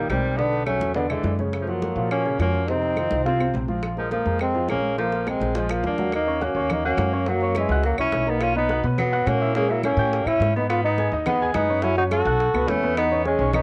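A straight four-beat pulse drives this fiery, sophisticated Afro-Cuban jazz fragment, cut from a longer piece. Congas, bongos and claves sit in the background from 0.1 s: bright, thin-skinned congas, tight high-tuned bongos struck with hard hands, and woody claves heard close. Up front, the pizzicato upright bass has a woody, warm, steel-strung tone, while the trombone leads the melody with light vibrato, scooped notes and a warm jazz voice. Beneath it, a clear, punchy tenor saxophone plays a forceful second line with vibrato and tape echo. The grand piano accompanies intimately, with long sustain and audible action noise, and a drum fill at 5.0 s ushers in a new section at 6.1 s. A small room and a cassette home recording give the horns and piano a cassette-tape character.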